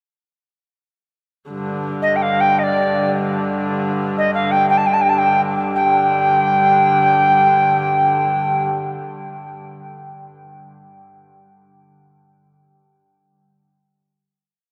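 In free time, this short medieval dance piece has a mysterious, ancient mood and unfolds in a vast, echoing space washed by a cathedral reverb with a 5.7-second decay. A single hurdy-gurdy sets a drone from 1.5 s, ranging from G2 to D3. Its wheel-bowed, keyed tone is rich and nasal, with a reedy edge and an airy bow noise. At 2.0 s an alto recorder enters with a modal melody in the range D5 to A5, tongued with a chiff and decorated with ornaments and vibrato. Its wooden, pure tone sits up front above the quieter drone, yet carries a distant quality in the reverberant hall. After a single melodic section, the piece settles onto a final chord at 5.8 s.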